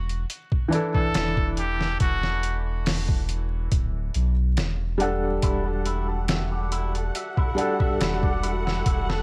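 Vinyl crackle and digital ambience frame this brooding, dark trip hop fragment in E minor at 70 BPM, where a gritty, pitched-down sampler drum kit with a thumpy kick and a round, deep analog bass with tube saturation sit up front under a soft, felt-muted upright piano with audible action noise, tremolo and tape echo; a nasal, jazz-style trumpet with straight mute carries a brief melody from 0.9 to 2.6 seconds, and from 5.4 seconds a sawtooth string machine of cellos with phaser and ensemble chorus holds sustained chords while a twangy envelope-filtered electric guitar picks arpeggios, with a very quiet flickering, granular texture entering at 6.1 seconds.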